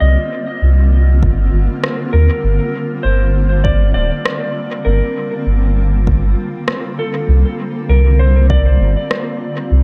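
A round, soft sub bass sits up front in this meditative, spacious ambient dub passage, a deep tone that blends triangle and square waves with a fast attack and long sustain. It moves at 99 BPM in 4/4 with a 60% swing on the sixteenths, in G minor and tuned to A4 = 443 Hz. A granular cloud pad holds sustained chords throughout, its detuned unison voices blurred and evolving under their own reverb, moving from Cm9 to Gm7 and then to Csus2 at 7.3 seconds. Over it, a dark, clean electric lap steel carries the fingered slide melody, roughened by vintage 12-bit sampler grit and trailed by dub echo. A deep electronic kick enters at 1.2 seconds and stays in the background, and an echoing rim click follows, both tape-warm and re-recorded in a large room. The whole mix is steeped in digital ambience and heavy echo, and the passage is cut from a longer piece.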